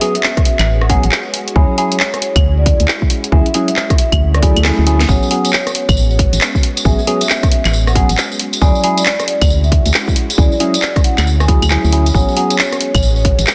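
Swung two-step garage at 136 BPM bounces on a punchy, tape-warm electronic kick and an up-front garage kit of cracking snare, handclaps, rim clicks, claves and hi-hats, with a very quiet electronic swell at 4.4 seconds and a drum fill at 4.6 seconds before a jingly acoustic tambourine joins at 5.1 seconds. Meanwhile, a dark, hollow, organ-like FM bass anchors the low end, a bright, barky tine electric piano fires phased stabs with dub echo, a mellow soft-mallet vibraphone sings a ringing melody through its own echoes, and a silky vintage string machine pumps in the background with chorused sustained chords, soulfully cycling between Amaj13 and Dmaj9#11 in this short, dense excerpt.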